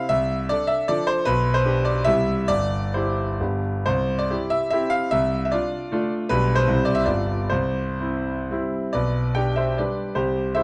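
Set in a dark, reverberant recital hall, this cut from a longer classical piece is a rustic, proud romantic dance in 3/4 for solo concert grand piano, its dotted rhythms flexing with rubato between 115 and 175 BPM, while the up-front, open piano sound and deep bass carry C major harmonies that circle through Dm7/C, G/B and G7 before a fresh section begins at 8.9 seconds.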